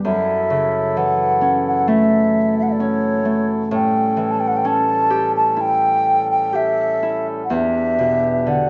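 Longing and mournful, this short cut from a slow Celtic air drifts at 64 BPM in a free, rubato 4/4, its hollow wooden flute carrying the melody up front with a pure, vibrato-touched tone that still feels distant. A fingerpicked Celtic harp rings beneath it as accompaniment, while a reedy, airy accordion holds soft sustained chords lower in the blend. A moderate recital-hall reverb surrounds the trio as the harmony moves from F#m7 to A7 at 3.7 seconds and Em7 at 7.5 seconds.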